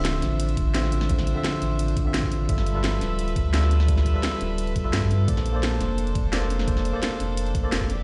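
A straight, rolling liquid drum and bass groove in four runs through this lush excerpt cut from a longer piece, built on a layered drum kit with a cracking snare and bright hats, with a knocking electronic kick joining at 0.6 seconds. Both drum parts sound produced and re-recorded in a small room, and underneath them a deep, round sine sub bass with a fast attack sits up front, sustaining its notes. A worn, slightly out-of-tune tine electric piano carries the accompaniment, lightly overdriven through a combo amp and trailed by tape echo, and it also sits up front. Behind it, a bright, earthy chamber string section holds bowed ensemble chords that pulse with sidechain pumping, moving from Dm9 to G13 and then Bbmaj9. The mix stays fairly dry, yet the whole track carries the stone-room character of a big sound system playing in a bare space.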